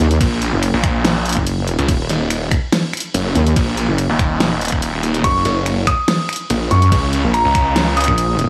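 Set in a digital ambience, this chaotic, heavy wobble dubstep cut from a longer piece runs at 143 BPM in a half-time 4/4 feel in Eb minor, where an up-front, saturated wobble bass with chorus and a growling, distorted saw bass with a moving notch drive the low end over a knocking electronic kick and a tape-warm kit of huge snare, bright hats, finger snaps and crash, moving from Ebm to Gb as a brilliant, intimate grand piano with audible action noise and digital delay enters high at 5.2 seconds.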